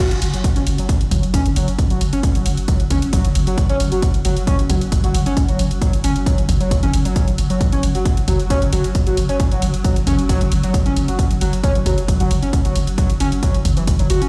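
A straight 4/4 pulse at 134 BPM drives this relentless peak-time techno excerpt, with a heavy, tape-toned electronic kick and warm electronic hi-hats, both re-recorded in a small room, under a growling, buzzy 808-style bass on F#1 that is overdriven, low-pass filtered and pumped by sidechain. Over an F#5 chord, an overdriven synth lead plays a screaming, guitar-like riff between E3 and F#4, bright and gritty with distortion, subtle chorus, vibrato, dub echo and sidechain pumping. From 0.9 seconds a swarming, detuned drone on F#3 sits in the background with its own built-in reverb, and the whole track sounds as if played on a big sound system in a bare room with large studio reverb.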